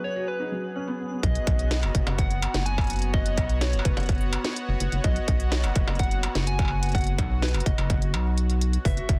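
Straight 4/4 at 126 BPM drives this intricate, wistful IDM piece in B major, which opens on a round, warbling FM synth lead with chorus and tape echo over a smooth, detuned analog pad with tremolo, a soft felt-muted upright piano playing arpeggios through delay and a filter sweep, and a faint twinkling granular shimmer that pumps in the background. At 1.2 seconds the piano and granular layer drop away as a rubbery, hollow square bass sits up front with a distorted electronic kick, joined by an industrial kit of smooth hi-hats, clanging snare and struck metal, while the chords move from F#sus4 to B. The piano briefly returns at 8.8 seconds, all within a dry, dense and heavily limited modern master.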